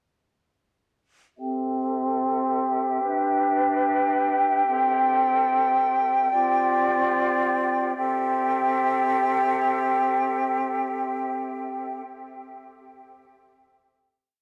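A dark production with light reverb and a small-room ambience frames this brief, melancholic hip hop piece. A flute section carries it alone from 1.4 seconds, its airy, bright tone sitting up front with soft attacks, lifted highs and an expressive vibrato. The flutes hold sustained, pad-like chords through an ethereal breakdown, passing from Am7 through Em7 and back to Am7 before settling on G7sus4. A filter sweep runs across the flute section during this stretch, with a low-pass filter and delay adding a hazy trail to its sound. At 8.0 seconds the harmony comes to rest on a final Am7 chord, which the flutes sustain until they stop at 12.0 seconds.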